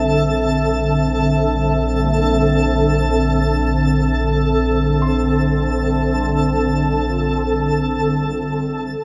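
Serene ambient music in free time and Bb lydian, resting on a single Bbmaj7 chord throughout this 9-second excerpt of a longer piece. A smooth, detuned sawtooth pad with chorus and a soft attack sits up front holding sustained chords under a filter sweep, while a bright granular texture twinkles with an octave-up shimmer and a deep, round sine sub bass anchors the low end. A very quiet felt-muted upright piano adds dark, intimate arpeggios with audible action noise, all bathed in a huge, wet reverb with a 7.8-second tail that gives the whole a warm, floating calm.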